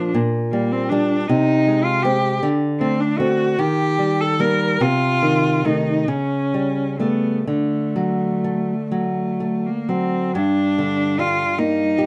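Melancholic and solemn, this romantic duo in G minor moves slowly in a rubato 6/8 at around 40-53 BPM. A rich, smooth bowed cello with vibrato carries the melody up front and close, while a woody, fingerpicked nylon-string guitar with old strings and a small sound supplies the accompaniment, both sharing a moderate studio reverb as if playing live in one room. The harmony moves from Gm/Bb through Ab/C, Eb and A7/C# to a D chord at 7.5 seconds before the passage settles on Gm at 10.4 seconds, where a new section begins just before this excerpt from a longer piece ends.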